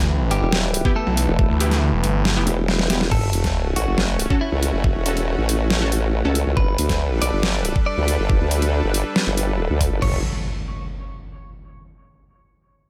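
Menacing and chaotic, this heavy wobble dubstep cut from a longer piece rolls at 139 BPM in a half-time 4/4 feel, set in F# phrygian with chords moving from Em through F#m and Gadd9 before returning to F#m. It opens on a drop where a snarling, growling distorted saw bass, detuned and up front with overdrive, roars until 2.5 seconds, while a formant-sweep wobble bass with chorus and overdrive enters at 0.4 seconds and holds the low end through to the close. A dubstep drum kit with a deep snare, bright hats and crashes sits overdriven and up front, joined by a knocking, tape-tinged electronic kick. The kick drops out for a drum fill just before a sub drop and impact land at 3.1 seconds, with another impact arriving at 10.0 seconds. Above the low end, a clean, picked electric guitar carries the melody through dub echo, a lush supersaw pad pumps with sidechain and a low-pass filter, and a bold, punchy orchestra-hit-like synth stab flashes in the background with reverb and echo, all wrapped in a digital ambience.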